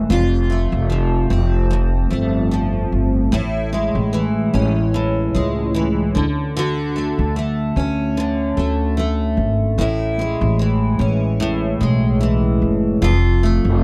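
Set at an unhurried 74 BPM in 4/4 with a gentle 16th-note swing, this easy-going, carefree acoustic pop piece in A major, cut from a longer piece, pairs a bright, full-bodied double-tracked picked steel-string guitar with a woody, thumpy pizzicato upright bass on gut strings, both up front through the whole span as the chords move from F through Amaj7 and Dmaj7 and back, in a dry, close 1970s-style studio sound touched with light reverb.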